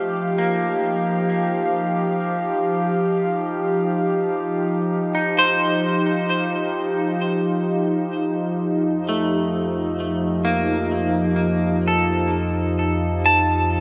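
Melancholic and reflective, this ambient piece sets a warbling, nostalgic, detuned pad of sustained chords with chorus beside bright, clean electric guitar arpeggios carrying analog chorus and delay, both up front, while a deep, ominous, rumbling drone enters at 9.4 seconds beneath them, inside a huge, wet reverb space.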